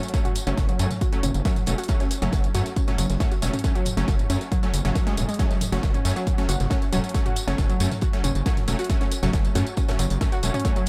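Driving peak-time techno at 137 BPM in F# minor, this intense, industrial excerpt rides a single F#m chord, with a heavy, tape-warm electronic kick up front and a gritty, aggressive synth bass, saturated and resonant with an evolving filter sweep, pumping from 0.5 seconds. A layered techno kit of hats, tambourine and toms pumps under tape echo, while a very quiet, dark acoustic reggae kit adds smooth hi-hat and a high-tuned snare. A warbling, lo-fi detuned pluck riff with chorus and tube saturation and a punchy, bright supersaw stab both pump and scatter dub echo through a dry, echo-heavy mix.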